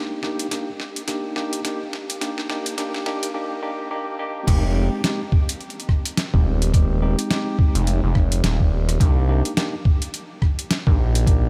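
Funky and swaggering, this glitch hop excerpt at 106 BPM in F dorian has a 58% swing on the sixteenths, opening with a build-up where a worn, slightly out-of-tune tine electric piano plays overdriven stabs through a filter sweep and diffuse ambient delay, pumping against the sidechain, while a pitched-down, tape-warm boom bap sampler-style kit of crash, hi-hat, rim click and medium-tuned snare runs a drum fill until 3.3 seconds. At the drop at 4.5 seconds, a gritty, aggressive driven synth bass with a resonant sawtooth and oscillator-sync bite and tube saturation arrives up front alongside a compressed, thumpy electronic kick drum. Underneath, the chords move from Ebmaj7/Bb to Fm7 and then to Cm7 at 9.0 seconds, all in a lightly reverberant room.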